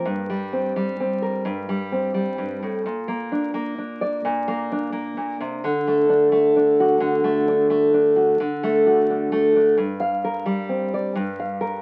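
Through the crackle of a very old 78 rpm record and a light reverb, a brief, intimate and wistful folk fragment in G minor at 130 BPM in 3/4 features a solo nylon-string guitar, dark and deep with fresh strings and thumb-plucked, sitting up front and moving from G minor through B-flat and D before returning to G minor at 9.8 seconds.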